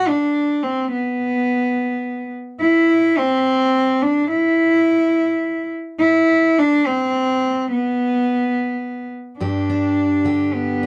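Uplifting and warm, this folk excerpt in 6/8 at 71 BPM opens with a lone bowed cello singing a rich, floating melody with a soft sul tasto attack and a pure tone, until a bright, full-bodied fingerpicked steel-string acoustic guitar with fresh strings and audible finger squeak enters at 9.4 seconds on a G chord, all in a dry, close 1970s-style studio sound with light reverb.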